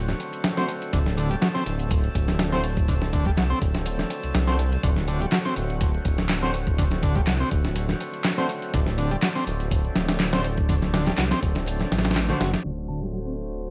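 Gritty and swaggering, this breakbeat piece moves at 123 BPM in a lightly swung 4/4 over a D7 chord, driven by an up-front, compressed soul sampler-style kit with a thumpy kick, layered with a second electronic kit of overdriven handclaps and metallic, filtered hi-hats. A dark, detuned saw bass rumbles beneath a buzzy, filtered combo organ riff with tape echo, while pop-style horn stabs and a thick tonewheel organ, its sustained chords turning through a slow rotary speaker and pumping with sidechain, sit in the background. At 12.6 seconds a filter sweep moves across the combo organ, and a soft FM bell with telephone-like, 12-bit sampler grit chimes briefly at 12.9 seconds over vinyl crackle and light reverb.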